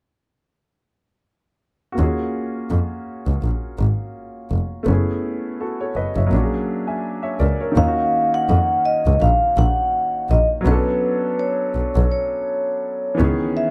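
An R&B and neo-soul piece with a swung, introspective late-night mood, cut from a longer work. An upright piano with a woody, vintage tone and long sustain enters at 1.9 seconds, opening on a rootless Ebm11 voicing, while a bowed double bass joins almost at once with an earthy, clear sound, up front in the mix. The harmony moves through rich extended chords, passing from Ebm11 and Gbm11 to an altered Bb7 before the music settles into a new section. At 7.8 seconds a vibraphone played with soft mallets takes the melody, its metallic, ringing voice mellow and warm, with a slow motor vibrato. Under it the chords shift through Ebm9, Bm9 and Dbm9, all wrapped in light reverb and small-room ambience within a dark, warm production.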